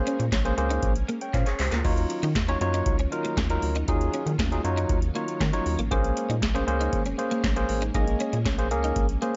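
A booming analog drum machine drives a straight 4/4 groove at 118 BPM, with a deep kick, crisp snare, handclaps, metallic hi-hats and a crash cymbal, all overdriven, pushed up front and wrapped in gated reverb, with a short drum fill at 1.3 seconds. This is early-eighties boogie funk in Eb dorian, tuned to A4 = 438 Hz, funky and danceable throughout this short cut from a longer piece. A rubbery square-wave bass with a fast, plucky filter attack holds down the low end, while a barky tine electric piano, lightly overdriven through a combo amp, sits up front with the accompaniment. A clean, compressed electric guitar plays a riff treated with ensemble chorus, and a shimmering string machine voiced as violins sustains chords in the background, carrying its own chorus. The harmony moves from Bbm9 to Ebm9 at 1.8 seconds and back to Bbm9 at 5.9 seconds, all within a digital ambience whose top end is dulled.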